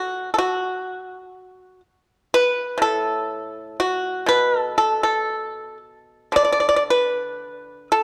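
A dry, percussive pipa played with fingerpicks sits up front as the sole voice throughout these 8 seconds of serene, flowing Chinese traditional music, ranging from A2 to D5 at a rubato pace around 57-63 BPM in 2/4, tuned to A4 = 439 Hz, with light reverb and a dark production in a short passage cut from a longer piece.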